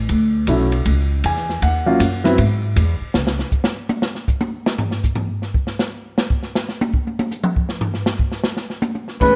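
A swinging 4/4 feel drives this relaxed small-group jazz excerpt, where woody pizzicato upright bass and an intimate grand piano with audible action noise accompany over Dmaj7, D#m7 and E before an airy drum kit with dark cymbals and a boomy kick takes a solo from 3.1 seconds; at 9.2 seconds bass and piano return as a breathy, whispered trumpet enters up front on a brief scooped B4, inside a moderate large studio reverb.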